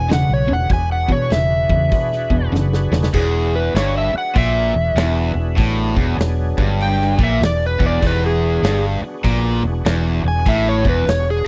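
A swaggering, gritty blues rock and southern rock excerpt at 98 BPM with a swung feel in E mixolydian opens together on an E7 with a warm, overdriven slide guitar melody up front, a bright, double-tracked cranked stack guitar riff, a dark, round, foam-muted fingered electric bass, a thick, overdriven tonewheel organ holding sustained chords in the background through a slow rotary speaker with chorus vibrato and key click, and a punchy big rock drum kit with crash, hi-hat and a medium-tuned snare, whose fill at 2.5 seconds leads into a slide guitar solo from 3.1 seconds, all captured in a dry, close 1970s-style small room.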